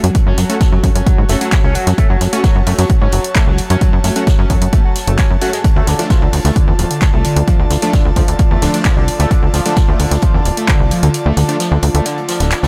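Industrial and intense, this excerpt of driving peak-time techno at 131 BPM rides a punchy, tape-warm electronic kick up front that drops out at 11.1 seconds, alongside a tight, nasal sequencer bass, an analog drum machine's handclaps and sidechain-pumped hi-hats, and a small-room acoustic jazz kit of high-passed hi-hat and snare in the background. A gritty, screaming, guitar-like synth lead riffs through phaser, tube saturation and delay, while a very quiet detuned supersaw stab enters at 0.5 seconds and an airy, breathy pad with chorus hovers behind. The harmony moves from F#m to Dm at 5.6 seconds under light reverb.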